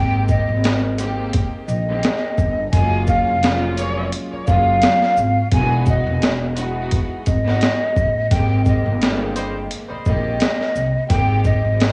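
A breathy, hollow jazz flute melody floats over soft-attack bowed strings and a woody, growly pizzicato upright bass from the start, joined at 0.3 s by a gritty, pitched-down boom-bap sampler kit with a thumpy kick and high-tuned snare, while distant, roomy horn stabs land at 3.8 s and 9.3 s in this nostalgic, cassette-hued hip-hop excerpt cut from a longer piece.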